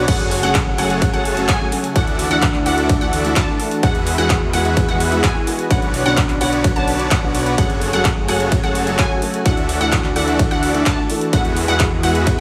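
Driving straight 4/4 at 128 BPM in F# minor, this emotional, powerful festival progressive house passage cut from a longer piece sets a huge, thick, compressed supersaw riff over a punchy overdriven kick up front, a big-room dance kit with metallic hats, clap, crash and ride, a detuned saw bass with chorus and tube saturation, a bright unison pluck arpeggio and an intimate, boxy grand piano with audible action noise in the background, with the riff, bass, pluck and piano all sidechain-pumped, while a very quiet, warbling vintage pad holds chords through F#madd9, Dadd9, Eadd9 and Bmadd9 in a dreamy mix soaked in plate reverb.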